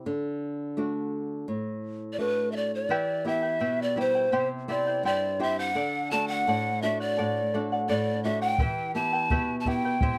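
Festive and earthy, this Andean folk excerpt in E minor moves at 84 BPM in a straight 2/4, opening on fingerpicked flamenco guitar with audible finger squeak before a bamboo-toned pan flute enters at 2.1 seconds carrying the melody with chiff and vibrato, a shimmering double-strung charango joins at 2.9 seconds, and a round, vintage-sounding bombo arrives at 8.6 seconds, all within a dark production and light reverb over chords of D, Em and C.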